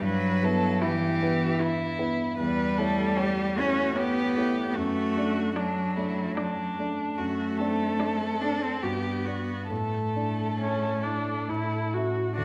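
A wet recital-hall reverb surrounds the players, letting each phrase hang for about 1.5 s. This is a slow, romantic movement for piano quartet in D major, lyrical and serene, moving in 3/4 at 66-78 BPM with free rubato and tuned to A4 = 438 Hz. The cello sits close and up front with a second line that is smooth and even, touched by light vibrato. The violin carries the melody from a more distant place, its rich tone shaped by vibrato and expressive portamento. A warm baby grand piano, also up front with long sustain, provides the accompaniment, and the viola joins it at 0.8 s with a smooth top, vibrato and portamento. The harmony moves from Em/G through A7/E, D/F# and Gmaj7 to an Asus4 that gives way to A at 11.5 s, near the close of this 12.4-second passage cut from a longer piece.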